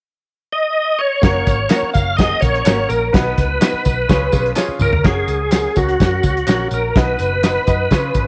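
A bright, reedy tonewheel organ leads this joyful, danceable snippet of uptempo 1960s-style soul at 126 BPM in F# major, its lightly overdriven tone carrying key click, chorus vibrato and a slow rotary swirl as it opens the melody at 0.5 s. From 1.2 s a punchy, up-front drum kit with a fat snare, a round, foam-muted picked electric bass and a clear, polished baby grand piano join in. Compressed tambourine and handclaps follow behind them at 1.5 s, and from 1.7 s a dark, slightly broken-up electric guitar adds lo-fi tremolo stabs in the background for a short stretch. A drum fill at 4.6 s pushes the chords from F#, B and C# back to F# for the closing section, all in light small-room ambience.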